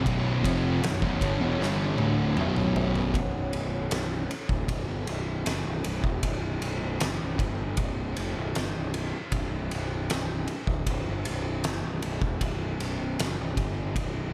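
The sound is dry, with the oversized, low-tuned acoustic drum kit and a growly fuzz bass placed up front in this ominous, heavy stoner and doom metal excerpt, a straight 78 BPM in 4/4 in B minor. The opening bars rest on a B minor chord. A crunchy, double-tracked overdriven guitar and two thick fuzz guitars, one warm and one dark, play a low riff in the background. Behind them, a calm, nasal, organ-like drone holds detuned sustained chords with a slow attack, long release, ensemble chorus and its own reverb. The drums bring a punchy kick, fat snare, toms and dark ride cymbal in a bright stone room with a pumping character, and a drum fill runs from 1.6 s. At 3.1 s the guitars and drone stop, leaving the bright, overdriven bass and the drums to carry on through the unharmonised remainder of the clip.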